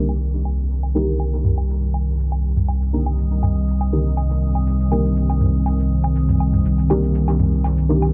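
Dub techno, cut from a longer piece, that feels cavernous and meditative, with a dark, detuned analog pad holding a Cm7 chord up front under a filter sweep, a round, deep analog bass anchoring on C2, soft chord stabs smeared by chorus, phaser, cassette tape and dub echo, dry electronic woodblock and toms sent into a small room and dub echo, a muffled, pitched-down shaker barely audible, and a bed of digital ambience carrying vinyl crackle through a low-pass filter.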